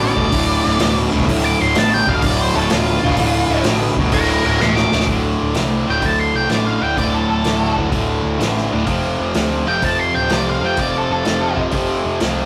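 A swung 126 BPM groove in 4/4 drives this heavy, brooding blues rock power trio and southern rock excerpt in D minor, with a bright, double-tracked crunchy overdriven guitar riff up front and a punchy, fuzz-laden picked bass underneath, while a vintage drum kit with a medium-tuned snare and rolled-off top pumps in a small room. A dark, octave-fuzz lead guitar solos from the start, a drum fill at 4.6 seconds leads into the next section at 5.1 seconds, and the lead drops out at 11.6 seconds as the chords move from Dm to D5 and then F. The whole take has the rough feel of a rehearsal-room recording, with saturated grit and a moderate stone-room reverb.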